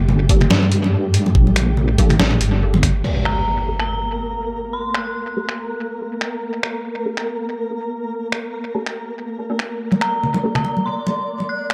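Set in moderate spring reverb and heavy echo, this heavy, meditative deep dubstep excerpt at 142 BPM, swung in half-time, opens on a deep, sawtooth wobble bass, a knocking electronic kick, bright hard-handed congas, a gritty, pitched-down sampler-style kit of snare, hi-hat, finger snaps and crash, and a muted dub chord stab over a flickering granular texture. At 3.0 s the bass and kick stop as an electronic impact hits and a filter sweep runs across the stab. Moments later an eerie, inharmonic FM bell enters, returning near the close alongside the congas.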